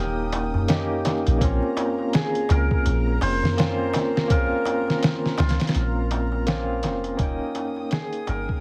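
Trip hop with a melancholic, hypnotic pull, this short cut from a longer piece rides a swung sixteenth-note groove while the harmony moves from Eb7 to Bbmadd9 and returns to Eb7 at 7.2 seconds. A sampler-style drum kit sits up front from 0.3 seconds, pitched down, muffled and tape-colored, with a thumpy kick, medium-tuned snare and hi-hat, alongside a crisp, deep metal-shell darbuka that enters just before it. Underneath, a soft 808-style bass hums with a round, sine-like tone, a fast attack and a decaying tail. A bright, barky tine electric piano carries the accompaniment with tremolo, while a dark violin section holds smooth, gently vibrato-touched chords in the background. A shimmering hammered dulcimer plays the melody through tape echo and 12-bit sampler grit, and the whole mix is wrapped in small-room ambience, a heavily compressed radio-like sound and vinyl crackle before fading out from 5.3 seconds.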